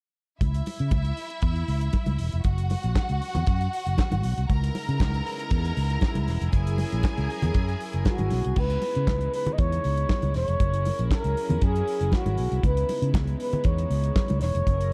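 A straight 4/4 groove at 118 BPM drives this danceable disco excerpt in C# dorian, led by a damped 70s drum kit with a fat snare, tight kick, dark cymbals and handclaps up front beside a punchy fingered electric bass, with bright, thin-skinned congas in the background, a lush, clear string section carrying a second line with vibrato until 8.5 seconds, a soft sul tasto string section holding floating chords from 4.5 seconds, and a breathy, dark flugelhorn taking the melody from 8.1 seconds with scooped notes and a whispered, intimate jazz feel, as the harmony moves between C#m7 and F#9 in a dark production with light small-room reverb.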